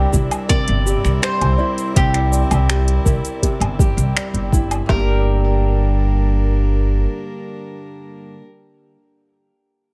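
A straight 4/4 groove from an organic electronic drum kit carries this delicate, autumnal folktronica fragment until about 5.1 seconds; its soft kick, woody snare, smooth hi-hat, cabasa, finger snaps and woodblock are overdriven and re-recorded in a small room. Over it, a bowl-back mandolin picks the double-string melody and a dark, hollow kalimba adds a quiet second line, both with tape echo, while a boxy acoustic archtop guitar plays echoed arpeggios on old strings and a pizzicato upright bass sits up front. A rich chamber string quartet holds airy, floating chords, and a faint, flickering, grainy texture glows in the background as the harmony moves from C7 to Gm at 4.9 seconds.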